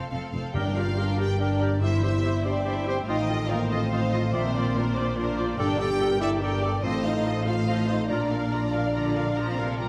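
A mellow French horn section holds sustained chords over rich bowed cellos and close double basses in this heroic, soaring cinematic passage in 12/8, cut from a longer piece. Lush violin sections with expressive vibrato carry the melody and a second line, joined by violas, a very quiet ringing harp playing arpeggios, a bright clarinet, a distant cor anglais and an airy flute section that enters at 1.8 s. Soft-mallet timpani sound briefly from 0.5 to 1.1 s, and a moderate scoring stage reverb surrounds the orchestra.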